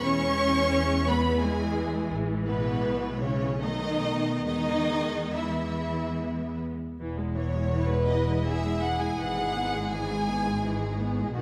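A smooth, even violin section carries the melody of this slow, lyrical movement for string orchestra, its bowed vibrato line ranging from B4 to C#6 until it stops at 11.0 s. Beneath it, a rich second violin section holds a smooth second line, while the violas add focused accompaniment. Warm, distant cellos share the bass with an expressive double bass section that sits close and reaches down to E1. In E major and 3/4, the music moves with rubato at 67-90 BPM, tuned to A4 = 437 Hz, passing through E, A5, E/B and B7 before returning to E and then E/G#, with a new section beginning at 7.0 s. A dark production and a concert hall reverb with a 2.0 s decay surround this brief passage, cut from a longer piece, giving it a warm atmosphere.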